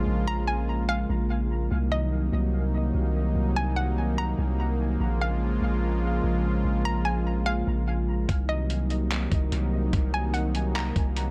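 A hollow, nasal square-wave pluck carries the melody from the opening moment, set over a smooth, detuned sawtooth pad holding sustained chords and a deep, sine-toned 808-style bass that decays from each note. This is hazy, ethereal cloud-rap at 146 BPM in 4/4 with a half-time feel, built on a slow shift between Bbm7 and Cm7b5. The pluck sits high and bouncy with chorus and dub echo trailing behind it, while the pad, treated with chorus and sidechain pumping, and the mellow bass stay up front. At 8.3 seconds a lo-fi, sampler-style drum kit arrives, pitched down and muffled, with a thumpy kick, hi-hat and handclaps pressed close by compression. A digital ambience and heavy echo soak the whole mix, giving this short cut from a longer piece a drifting, dreamlike haze.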